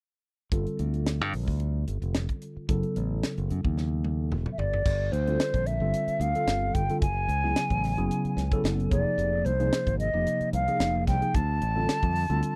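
Electric jazz fusion at 111 BPM in a straight 4/4, intense and driving, cut from a longer piece: a tight funk drum kit with dark cymbals, a high-tuned snare and a tight kick sits up front beside a bright, punchy fingered electric bass, while a clean tine electric piano with phaser plays the chords, moving from G9sus4 through F#m7, F#m11, Fm11 and Dm7. A drum fill at 3.8 seconds leads into the second section, and a mellow, hollow silver concert flute enters at 4.5 seconds with a pure, vibrato-touched, tongued melody. The dry, close 1970s-style studio sound carries light reverb.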